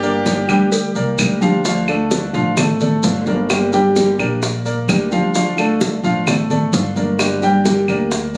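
This sultry fragment of Cuban son in the guajira style opens in D minor at 130 BPM in a straight 4/4. At the start, a bright, metallic tres with double strings plays the melody in the background, while a brilliant, punchy trumpet with light vibrato adds a forceful, pop-style second line from a roomy distance; both fall away by 1.1 s. Beneath them, an up-front, clear grand piano with a deep bass and a slightly worn tone plays arpeggios, a warm, fingerpicked nylon-string guitar gives classical accompaniment, and a dark, thumpy gut-string upright bass is played pizzicato. Ringing congas played with soft hands and grainy maracas sound from the first moment, tight, high-tuned cowbell and bongos join at 0.3 s, and woody, vintage claves with a band-limited tone follow soon after. The harmony moves back and forth between Gm and Dm, and the whole is captured on a phone in the room with moderate studio reverb and compression.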